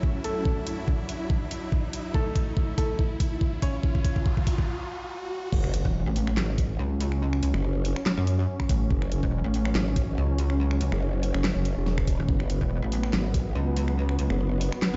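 Heavy and menacing, this heavy wobble dubstep passage, cut from a longer piece, moves at 142 BPM in F# minor with a half-time, lightly swung feel. It opens with a build-up on F# minor. A brilliant, worn-sounding grand piano carries a brief melody over lush, full-bodied detuned supersaw chords that pump with sidechain through a low-pass filter, while a drum fill, a riser and a noise sweep gather toward a short break. At 5.5 seconds the drop lands on an F# power chord with an electronic impact, and two basses take over up front: a growling, formant-filtered growl bass, joined moments later by a pulsing, saturated pluck wobble bass, both thickened with chorus and overdrive. Beneath them, a knocking, tape-warm electronic kick and a layered dubstep kit with a huge snare, bright hats, crash, finger snaps and handclaps drive the groove. The parts themselves carry little reverb, but the whole sounds as if played through a big sound system in a bare stone room, with a dark top end that stops at 7.8 kHz.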